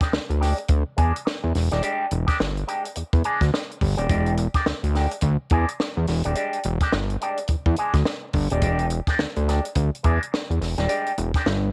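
A fat analog bass holds down the low end of this energetic, gritty funk clip, its detuned sawtooth tone saturated and thick, with a fast attack, sustained notes and an evolving filter sweep, sitting up front from 0.1 s to 11.7 s in the low register. A compact cocktail drum kit plays hi-hat, kick and snare, sounding dry and natural with a punchy kick and a high-tuned snare. A clean, picked electric guitar runs through an envelope filter for a wah quality and a warbly pitch drift, playing as accompaniment in a middle range. The groove moves at 106 BPM in 4/4 with a 60% swing on the sixteenths, all over a single E7#9 chord. Light reverb and a small room ambience frame the parts, and the piece is cut from a longer performance, ending at 11.7 s.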